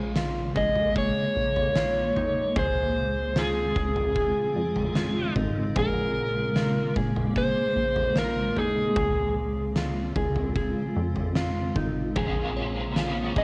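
A dark, overdriven slide guitar carries the melody up front in this hazy, haunting dream pop excerpt, colored by cassette tape and analog delay, over a blurred, detuned granular cloud pad holding Bbm7 and Dbmaj7 chords, a mellow, clean electric guitar fingering chorused arpeggios, and a punchy, plucky analog bass. An oversized low-tuned drum kit with a fat snare, punchy kick and toms booms through a pumping stone room, saturated and gritty on tape. Near the end, a bright, raw garage guitar with overdrive and tremolo enters at 12.2 seconds, and a crystalline FM synth bell warbles faintly in the background from 12.6 seconds, all within a modest booth ambience and the character of a home cassette recording.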